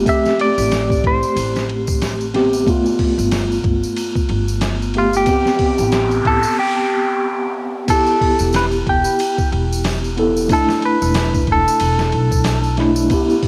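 This recording carries the softly reverberant, homespun sound of a cassette home recording, setting a hypnotic, dark trip hop mood over a swung 4/4 groove. Up front, a mellow tine electric piano lays out Am7 and G7 chords, colored by harmonic tremolo, vintage 12-bit sampler grit, cassette tape character and tape echo, while a woody, pizzicato upright bass anchors the low end. A bright, twangy clean electric guitar, picked and compressed, carries the melody through its own tape echo. The boom bap sampler-style kit sounds pitched down and gritty, with a thumpy kick, a medium-tuned snare, hi-hat, ride and crash, joined by a close, dry tambourine played with hard hands. An electronic noise sweep enters at 5.6 seconds and leads into a short break, and from 7.9 seconds the second section shifts the harmony to Em and E7sus4 as this cut from a longer piece closes.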